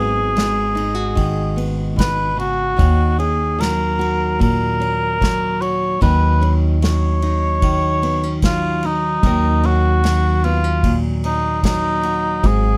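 An acoustic folk-pop ballad, cut from a longer piece, unfolds in a reflective, heartbroken mood over a straight 4/4 pulse. A mellow cor anglais carries the melody up front in a classical solo style with light vibrato. Beside it, a fingerpicked nylon-string guitar provides small, warm accompaniment, its finger squeaks audible as it moves through minor seventh chords and a rootless added-ninth voicing. A pizzicato upright bass with gut strings adds a woody, thumpy, dark low end. An acoustic drum kit, entering at 0.4 seconds and played with bundle sticks, gives a punchy kick, a medium-tuned snare and a ride cymbal, with an airy, polished small-room sound, all under light reverb.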